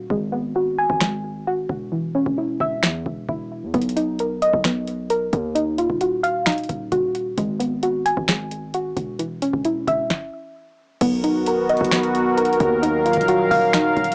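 A soft, round pluck with a dark, chorused cassette-tape sheen and analog delay spins brooding, eerie arpeggios over punchy, heavy 808-style bass and a booming analog drum machine of deep kick, crisp snare, finger snaps, metallic hats and crash in this half-time trap hip hop cut at 132 BPM, moving through Abm7, Dbm/Fb, Bmaj7 and Ebmadd9 with a break across the opening 3.7 seconds, a stop at 10.1 seconds, and a mellow, detuned sawtooth pad entering up front at 11.0 seconds, captured as a home cassette recording with small-speaker tone and moderate booth ambience.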